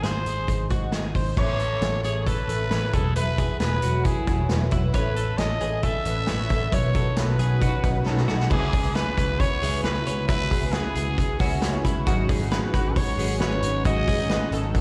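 A growling, raspy trumpet leads this restless, bittersweet slice of jangly indie pop, its bright vibrato-laden melody carrying a slapback echo over a steady straight 4/4. A bright twelve-string electric guitar spins clean, compressed arpeggios through analog chorus, slapback and tape echo, while a picked twelve-string acoustic shimmers in the background, octave-doubled and echoed as well. Underneath, a dark, round, foam-muted vintage bass and an up-front vintage drum kit with a punchy kick, dark cymbals and a rolled-off top anchor the groove, and a drum fill at 8.1 seconds ushers in the closing stretch. Detuned sawtooth analog keys with filter sweeps, chorus and phaser join at 1.4 seconds, and a very quiet, silky string machine adds warbling sustained chords from 9.3 seconds as the harmony settles onto C#m7. The whole performance is heard through a venue's PA with recital-hall reverb, cut from a longer piece.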